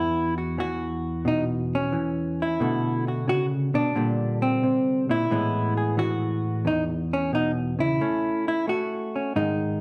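A hollow-body jazz guitar plays alone throughout, delivering a relaxed, sophisticated solo jazz passage cut from a longer piece. The tempo sits at 89 BPM in 4/4 with a swung eighth-note feel. The electric guitar is played fingered and sounds dark and clean, compressed and placed up front, ranging from E2 to G#4. Its harmony moves from Esus2 through Bm7 and A#69 to Amaj9, settling on A6 at 8.0 seconds. A generous large-studio reverb surrounds the instrument, giving the roughly 10-second passage the airy feel of live playing in one room.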